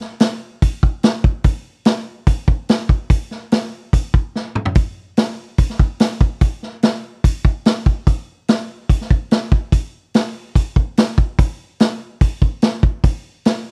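A straight 4/4 rock beat drives this short cut from a longer piece at 145 BPM, carried entirely by a vintage acoustic drum kit that plays from 0.0 to 13.6 seconds. The mood is brooding and smoky, with hi-hat, kick drum, snare drum and toms filling the whole frame. A brief drum fill breaks the pattern between 4.3 and 4.8 seconds. The kit sits up front and mid-forward, with a tight kick, a medium-tuned snare and a saturated, gritty character softened by a rolled-off top. The sound is dry and close, in a 1970s-style studio room with little reverb, giving the drums an intimate, in-your-face presence.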